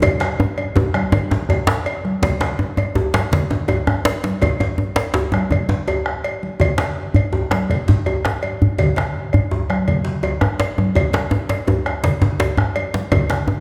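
West African traditional drum ensemble music in 12/8 at 110 BPM, festive and driving, with a short drum fill over the first 2.2 seconds before the main groove settles in for the rest of this brief cut from a longer piece. A deep, soft-handed djembe sits up front, close and dry, while a second, tight djembe cracks under hard hands, joined by a round bombo, thick-skinned medium-tuned congas in the background, and a metallic cowbell with a small-room sound. The older, band-limited drums carry a vintage character, and the ensemble is heard from further back in a wet recital hall with a long reverb tail.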